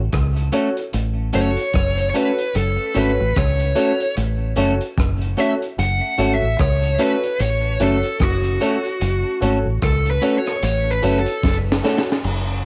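A dusky, cassette-saturated home recording with light small-room ambience opens on a deep, round dub bass played with the fingers, sitting up front on a single F# minor chord in this serious, laid-back roots reggae excerpt at 74 BPM with a swung sixteenth-note feel. A gritty breakbeat kit with punchy kick, high-tuned snare, rim clicks, hi-hat and dark crash cymbal joins, followed shortly by a clean picked electric guitar with tape echo and woody upright piano stabs with audible action noise. The overdriven lead guitar takes a dark, smooth solo up front from 1.4 seconds, and a drum fill arrives at 11.4 seconds.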